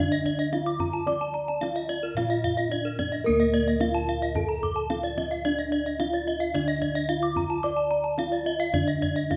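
A brilliant, hypnotic stretch of Balinese gamelan in D pelog at 110 BPM opens at once with a mellow, padded-mallet bronze metallophone carrying the melody over soft, round bossed gongs in the bass, while two bright, horn-struck metallophones spin arpeggios above, one of them close-miked, dry and full. Paired tuning gives the metallophones their shimmering beats, and the lead has a vintage, band-limited tone against the airy gongs. A deep acoustic kendang joins at 0.3 seconds, all set in a moderate recital-hall reverb, in this 9.4-second passage cut from a longer piece.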